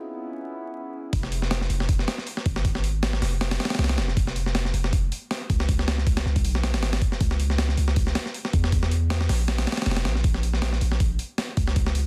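Crackling with vinyl noise under a dense, heavily limited master, this frenetic, nostalgic drum and bass and jungle cut opens with a warbly, detuned lo-fi pad bathed in chorus, reverb and a filter sweep for its first 1.1 seconds, then drops into a gritty, compressed, pitched-up breakbeat kit with a thumpy kick, a medium-tuned snare and high-passed hats, set up front over a deep, mellow sine 808-style bass holding long, decaying notes through Fm, Dbm and Bbm until 12.1 seconds.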